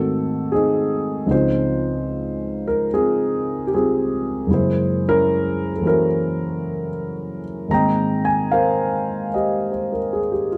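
Intimate and wistful, this brief jazz ballad excerpt features a lone baby grand piano, dark and mellow with audible action noise and long sustain, sitting up front in light reverb as it moves through extended jazz chords in an unhurried swing over about 10.6 seconds.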